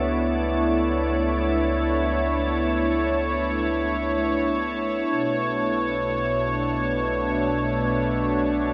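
A smooth, detuned sawtooth pad with subtle chorus sits up front in this peaceful, free-time ambient fragment, holding soft-edged sustained chords that shift from C#m7 to Bm9 at 5.1 seconds over a deep, round sine sub bass, a calm organ-like drone thickened by ensemble chorus and its own reverb, and a glassy, ethereal glass harmonica texture, the whole mix bathed in a lush hall reverb.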